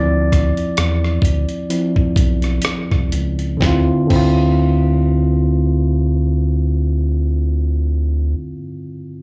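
A worn, slightly out-of-tune tine electric piano, lightly overdriven through a combo amp with plate reverb and slapback echo, takes a mellow solo over a Dm9 chord as the tempo slows through the first 3.6 seconds of this smooth, late-night neo-soul R&B excerpt in D minor, set at 60-67 BPM with a swung 16th feel and carried by a round, deep analog bass blending sawtooth and sine tones and a gritty, compressed sampler-style drum kit with thumpy kick, fat snare, hi-hat, rim click and crash that drops out at 4.4 seconds, captured live in a club through the venue's PA.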